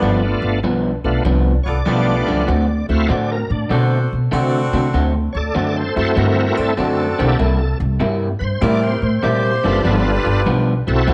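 Blues with a laid-back, soulful feel, this short cut from a longer piece moves at 98 BPM in 4/4 with a swung eighth-note lilt. A bright, shouting tonewheel organ sits up front, lightly overdriven and colored by a slow rotary speaker and chorus vibrato as it supplies the accompaniment throughout. An electric guitar through a small old amp carries the riff with a slightly broken-up, compressed, picked tone and a subtle chorus, while a jazz-style saxophone section adds warm ensemble stabs until 10.9 seconds. Underneath, a woody, growly pizzicato upright bass with steel strings stands out at the front of the mix. The harmony moves from G7 to D7 at 2.5 seconds, then to C7 and back to G7, all set in a light studio reverb.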